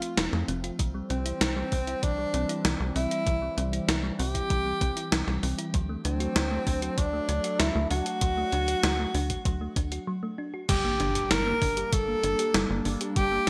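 A breathy tenor saxophone with scooped notes, vibrato and digital delay carries the melody up front over a swirling phased analog pad, a round, tine-like thumb-piano-like synth pluck playing chorused arpeggios and a gated 80s digital drum machine with crash, hi-hat and a gated-reverb snare, joined almost at once by a tight, nasal sequencer bass with sidechain pumping and a thumpy electronic kick drum, in a driving, nostalgic 97 BPM synthwave excerpt in G dorian, where a brief break at 10.1 seconds gives way at 10.7 seconds to a G minor chord and a very quiet electronic impact, all set in moderate plate reverb with a bright 1980s-style digital sheen.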